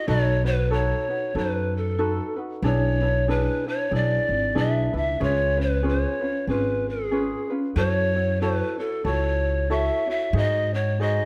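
Hawaiian music in C# minor, relaxed and dreamy, moving at 94 BPM in 4/4 with a gentle swing on the eighth notes, cut from a longer piece. Large pan pipes carry the melody up front, their cane tone breathy with a soft, chiffy attack, straight tone and rolled-off highs, and a slapback echo trails each phrase. A mellow ukulele, thumb-plucked and light, supplies the accompaniment throughout the 11.3 seconds. Upright bass sits prominently underneath, its pizzicato woody and thumpy with the ring of steel strings. The chords drift from B7 through E7/B, C#7 and F#m7 before landing on G#7 at 10.3 seconds, and a moderate recital-hall reverb gives the whole a soft, spacious glow.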